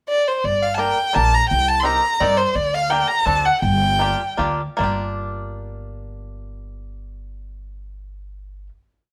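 A swung 3/4 lilt at 146-172 BPM carries this short, bittersweet and whirling musette waltz in G minor, where a dark, bowed violin sings an expressive motif melody with vibrato, soft attacks and portamento until 4.3 s, a twangy, fingerpicked bluegrass banjo sounds backbeat chords in close voicing, and a woody, thumpy pizzicato upright bass on gut strings plays root and fifth on the main beats, the trio heard live in a moderate stone room as the tempo slows from 2.6 s into a final chord at 4.8 s.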